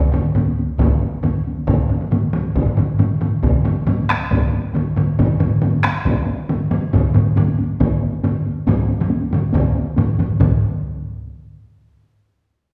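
Japanese traditional taiko drumming drives forward at 138 BPM in a straight 4/4, carrying a ceremonial, driving mood through this short cut from a longer piece. Four taiko ensemble parts struck with hard sticks fill the texture, the first sounding from the very start, two more joining at 0.1 seconds, and the last arriving at 0.8 seconds. One ensemble is close and dry, another has a vintage, band-limited character placed up front, and a further one sounds distant, as if set in a large room while still sitting forward in the balance. The whole performance rings in a recital hall with a reverb tail of about 1.5 seconds, giving the drums a churchlike or concert-hall resonance. A second section begins at 10.4 seconds, the drums stop near 10.8 seconds, and the excerpt closes at 12.7 seconds.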